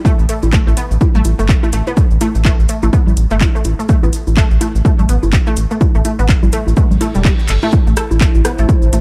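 Clinical and sparse, this minimal techno excerpt moves at 125 BPM in 4/4 with a 59% swing on the 16ths, set in A minor. A punchy, overdriven electronic kick sits up front beside a rubbery, hollow square-wave bass that bounces up front with sidechain pumping. A juicy, squelchy resonant blip pluck carries the riff with ensemble chorus, dub echo and its own pumping. A house kit of handclaps and metallic hi-hats, also overdriven, and tape-warm electronic congas with rim click fill out the groove, while a grainy cabasa stays in the background. A reverse cymbal at 7.0 seconds leads into a drop at 7.7 seconds, where the harmony settles on A minor and a warbling, nostalgic tape-like pad with chorus and built-in reverb enters at 8.0 seconds. The dark production keeps reverb to a minimum.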